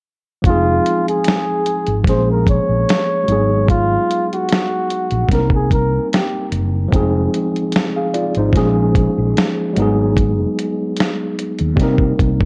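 A breathy, mellow flugelhorn with light vibrato carries a jazz-style solo through tape echo from 0.5 to 6.5 seconds, sitting up front in this hazy, nostalgic lo-fi hip hop excerpt at 74 BPM, over a worn, slightly out-of-tune, lightly overdriven tine electric piano with a cassette tint, a dark, round, punchy fretless bass, and a gritty, compressed sampler-style drum kit with a thumpy kick and swung 16ths, all cycling through Fm7, Bbm7, Abm7 and Cm7 in a lightly reverberant room.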